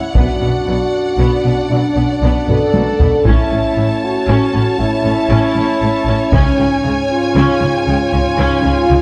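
Heavy-stick taiko drums drive this dramatic, epic orchestral film-score excerpt in a straight 12/8, with a fill at 2.5 seconds before they drop out at 6.8 seconds. Mellow, distant French horns and background trombones hold sustained chords over Bm, A and C#. Meanwhile vibrato-rich violins carry a lush, focused melody and a smooth second line above even violas, dark woody cellos and rich double basses, all set in a moderate scoring-stage reverb with a dark production.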